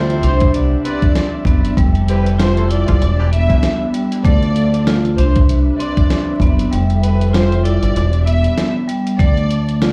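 A swung boom-bap groove at 97 BPM comes from a dusty, compressed sampler-style kit with a thumpy kick and fat snare, its kick muted from 6.7 to 9.2 seconds, over a round, punchy dub bass in this moody, gritty hip hop piece. A hard-mallet vibraphone with slow motor vibrato rings through cassette-tape coloring, while a lush, close violin section carries the melody and a woody string section holds chords in the background over a Cmaj9, Fmaj9, Em7, Dm7 progression. A loose, jazz-style horn section with octave doubling adds delayed stabs that stop at 3.6 seconds, all set in large studio reverb with vinyl crackle.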